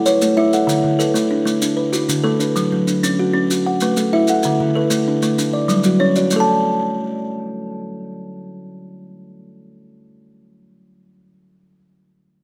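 A hypnotic, rippling southern African traditional piece built on an mbira-style interlocking cycle opens with two kalimbas playing arpeggios at 128 BPM in a straight 12/8: a bright, buzzing one sits up front with a woody thumbnail pluck, while a darker, smoother one rings more softly through tape echo. Grainy, mellow maracas add percussion from 0.1 to 6.5 seconds as the harmony moves through A, D and F#m, and the chords fall away at 6.3 seconds. Close, detailed microphones and light reverb capture this excerpt from a longer piece.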